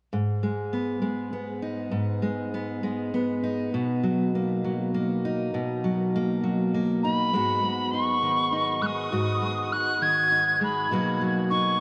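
A 6/8 pulse at 67 BPM, counted in dotted quarters, carries this anthemic, warm folk fragment, cut from a longer piece, as a dark, full-bodied fingerpicked steel-string acoustic guitar moves from G#m to Bmaj7 and on to G#m7. At 7.0 s a pure, mellow tin whistle enters up high with the melody, its soft attack and expressive vibrato trailed by analog delay. The whole dreamy mix is soaked in a huge ambient reverb with a softened top end.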